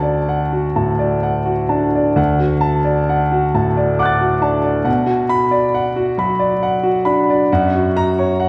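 In a rubato 3/4 that drifts between 63 and 70 BPM, this short passage from a longer neoclassical minimalist piano piece unfolds with a hopeful, tender mood in D major, tuned to A4 = 439 Hz. A concert grand plays alone for the full 8.5 seconds, spanning D2 to A6, so its deep bass sits beneath high, clear upper notes. The piano's tone is intimate and slightly boxy, with audible action noise and a long sustain that keeps each chord hanging in the air. The harmony moves from D to Bm at 4.9 seconds and lands on F# at 7.5 seconds. A wet scoring-stage reverb with a 1.9-second decay surrounds the instrument, and the listener seems placed further back in the room, even though the piano itself has an up-front presence.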